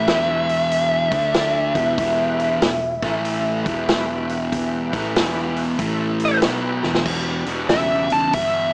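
A compressed fuzz lead guitar with wah carries the melody through this gritty, smoky blues rock and southern rock excerpt, breaking into a solo at 7.1 seconds after a short drum fill. Beneath it, a double-tracked fuzz guitar riff sits up front, while an overdriven tonewheel organ holds thick sustained chords in the background through chorus vibrato and a slow rotary speaker. A dark, round hollow-body bass and a punchy vintage drum kit with a rolled-off top drive the swung groove, all heard through light studio reverb and a small-speaker sound.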